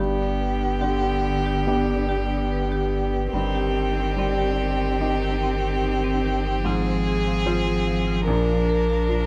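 Closely miked and lightly reverberant, this longing, fragile neoclassical passage in a rubato pulse sets a focused, vibrato-laden solo violin melody up front over a deep, round sine sub bass, while a clear viola accompanies, a distant cello sings a rich second line with portamento, and a brilliant, woody upright piano and airy hard-mallet marimba arpeggios glint in the background.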